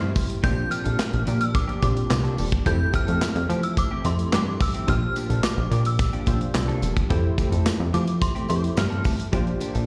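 A straight 4/4 groove drives this early-eighties boogie funk cut, with a punchy, up-front modern studio kit of kick, medium-tuned snare, hi-hat and handclaps entering at 0.2 seconds alongside a jingly tambourine tucked into the background. Underneath, a plucky analog bass sits loudest in the mix, its fast-attack filter pluck giving each note a punchy, decaying snap. A dark, detuned polysynth comp and a slightly broken-up, compressed electric guitar riff fill the middle, both carrying chorus and slapback echo, while a brassy, airy analog pad holds sustained chords with vibrato and a moving notch behind them. On top, an inharmonic FM synth chime rings out the melody high in its range, shimmering through ensemble chorus, slapback and tape echo. The harmony rocks between Bb6 and Fmaj9, and the whole thing sounds like a live gig heard through a venue's PA, with a small-room ambience and recital-hall reverb that give this danceable, late-night excerpt a roomy glow.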